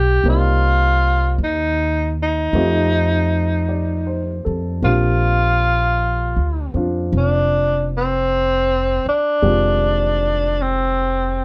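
A breathy tenor saxophone leads this tender, intimate jazz ballad, its whispered, vintage subtone carrying vibrato and scooped notes with a soft attack, up front in the mix. Beneath it, an upright piano accompanies with a short sustain, and a thumpy, woody pizzicato upright bass also sits up front, both playing throughout as the harmony moves through Cm7, F9, Bb69 and Fm7 in Bb major at a slow 52 BPM in a swung 4/4. Light reverb and a dark production frame this 11.4-second fragment of a longer piece.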